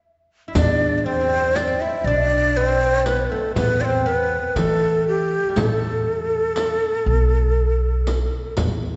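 Set in a straight 10/8 at 120 eighth notes per minute, this soulful, melancholic fragment of an Arabic maqam ensemble piece in E bayati opens with a brief pause before the group enters at about 0.5 s. A breathy, expressive ney carries the melody up front with vibrato, a woody fretless oud plays a deep second line beneath it, and a pizzicato upright bass anchors the low end, while a small, bright frame drum and a riq with dark jingles supply the percussion. The ensemble sounds as if it is in a church or concert hall, with a long, wet reverb and a softened top end.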